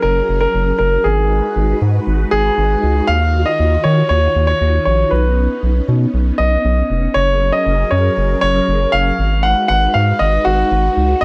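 A warm concert grand piano carries the melody up front with audible action noise and an analog delay, over a round, dark analog bass and mellow string-machine violas shimmering with phaser and ensemble chorus, in this driving, melancholic synth-pop excerpt at 118 BPM, moving through Gbadd9, Abm7, Ebmadd9 and Badd9 chords in light reverb.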